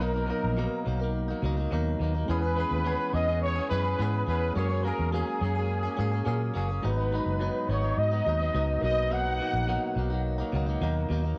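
A sunny, dreamy indie pop piece in B major at 106 BPM opens with a breathy, whispered trumpet melody with scooped notes and vibrato, set over a twangy, picked clean guitar with lush chorus and warbly pitch drift, a reedy electric piano pulsing with fast tremolo in the background, and a round, punchy foam-muted bass up front. The chords move from Bmaj7 through E6, F#add9 and G#m7 before returning to Bmaj7, and the trumpet drops out at 10.3 seconds while the band carries on. Cassette tape colour, plate reverb and a small room give this home-recorded fragment of a longer piece an intimate, vintage haze, with tape echo trailing the trumpet.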